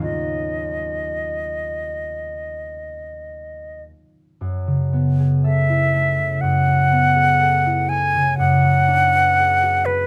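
Impressionist classical duo for flute and harp, mysterious and hazy, moving at a slow, rubato 54-62 BPM in 4/4 and drifting from E-flat minor to F-sharp minor at 4.4 seconds. The bright, airy concert flute carries the melody up front with soft attacks and expressive vibrato, while the mellow, thumb-plucked concert harp supplies ringing accompaniment over rich extended chords such as Ebm9 and F#m11. Close, detailed microphones and little reverb keep both instruments intimate in this brief cut from a longer piece.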